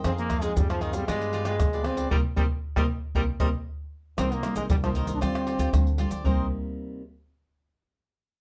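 A nostalgic, yearning samba and choro groove in C minor at 116 BPM opens with crisp picked cavaquinho, fingerpicked nylon-string guitar with a deep classical tone, a woody, thumpy pizzicato upright bass sitting in the background, and up-front maracas, tight surdo, pandeiro and tamborim played with soft hands. A bright, forceful trombone enters at 0.1 seconds with a jazz-style solo melody full of vibrato, sounding punchy yet distant and roomy, while the band hits an accent from 2.1 seconds as the chords move from Fm7 and G7b9 to Cm7. The dark, warm production carries light reverb, and the guitar rings on until 7.0 seconds in this short cut from a longer piece.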